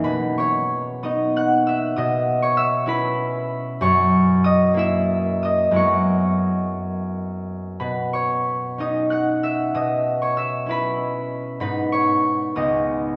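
A lush church reverb with a 3.3-second decay fills this recording, and the listener seems placed toward the back of the room. A single concert harp carries the whole performance. Its mellow, ringing tone sits up front within that resonant space. This graceful, dreamy classical passage is cut from a longer piece. It moves in a rubato 6/8 at roughly 56 to 67 beats per minute, counted in dotted quarters, and rests in B major. The fingerpicked harp spans from C#2 up to F#6 across its 13.2 seconds. Its harmony drifts from B6/9 through C#m7/B and F#7 to F#9sus4, returns to B6/9, and closes on G#m and C#sus2.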